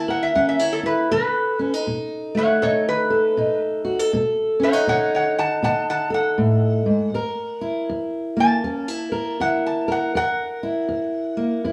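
A metal-body resonator slide guitar, nasal and metallic and played up front with a steel bar and fingerpicks, carries a swaggering, laid-back melody across this 11.7-second cut of acoustic country blues at 80 BPM with a swung 4/4 feel, while a dark, fingerpicked steel-string acoustic guitar accompanies it over F#7 and B7 chords in a small room with a wet studio reverb.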